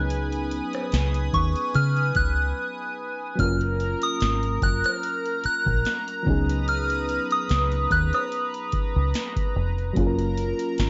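Dreamy and smooth, this contemporary R&B excerpt moves at a relaxed 73 BPM in 4/4 with a light swing on the sixteenths, cut from a longer piece. A mellow FM electric piano with a warbling, vintage character and a touch of chorus carries the accompaniment, while a shimmering, detuned pulse-width pad holds sustained chords above it. Underneath, a deep dub fingered electric bass sits round, punchy and up front, and a booming analog drum machine supplies a deep kick, crisp snare, metallic hats and rim clicks, re-recorded in a large room. From 1.3 seconds a soft synth bell with a pure tone, chorus and phaser sings the high melody until 9.5 seconds, with a brief break between 2.6 and 3.4 seconds. The harmony alternates between C#9sus4 and F#maj7, and the whole has a hazy, home-recorded cassette sound with light reverb and a dulled top end.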